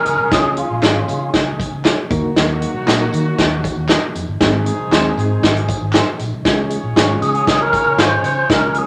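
A swinging big-band drum kit with a punchy kick and a medium-tuned snare drives this joyful, danceable 1960s-style soul cut at 117 BPM in Db major, joined by a dark, round, foam-muted electric bass and very quiet, saturated tambourine and group handclaps. A mellow, reedy electric piano with fast tremolo supplies the accompaniment, while a tight horn section with vibrato and octave doubling plays a second line, and a slightly broken-up guitar adds picked stabs in the background. Up front, a fat, lightly overdriven tonewheel organ with key click and fast rotary speaker carries the melody, sounding at the start and again from 7.2 seconds, all in a moderate club reverb.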